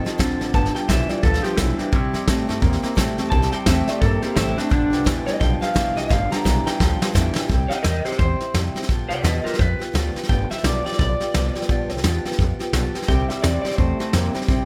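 A swung 172 BPM rockabilly piece in C major, upbeat and rollicking, where a soft brush kit with a punchy kick sits up front over a woody, thumpy pizzicato upright bass and a boxy, finger-squeaking acoustic archtop, while one twangy, slightly broken-up electric guitar through a small old amp plays a lo-fi riff that drops out after a drum fill at 7.5 seconds and returns at 13.1 seconds, and a second, compressed electric guitar carries the melody with tape echo, all in a light reverb in this excerpt cut from a longer piece.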